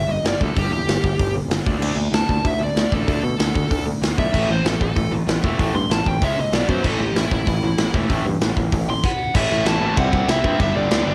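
A straight, driving 4/4 pulse at 191 BPM powers this rowdy, energetic punk rock excerpt, cut from a longer piece. An acoustic rock kit recorded in a big room sits up front, with bright cymbals, a medium-tuned snare, hi-hat and a tight kick. Underneath, an overdriven picked electric bass adds a warm low end, while a crunchy overdriven guitar churns out a picked riff in the background and a second, tight distorted guitar joins it at 4.3 seconds. Over the top, a dark, smooth overdriven lead guitar plays a soaring solo through the opening section over shifting power chords, which drop out briefly at 9.0 seconds before the band hits a short new passage on A, C and G from 9.3 seconds. The home cassette recording gives the lead, rhythm guitars and drums a gritty tape character, with a light reverb around the whole mix.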